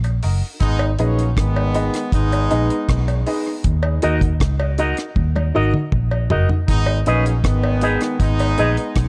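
A round, foam-muted vintage electric bass sits up front in this hypnotic, meditative dub reggae excerpt, joined by a dark, dry reggae drum kit with a tight kick, rim clicks, hi-hat and toms. Close acoustic cowbell percussion, woody and slightly detuned upright piano stabs, and a smooth, tight horn section carrying a second line all pass through tape echo. The excerpt opens on a break lasting until 3.6 seconds, and a bright, twangy envelope-filtered guitar joins at 4.0 seconds before a drum fill from 5.2 seconds, all under a light reverb.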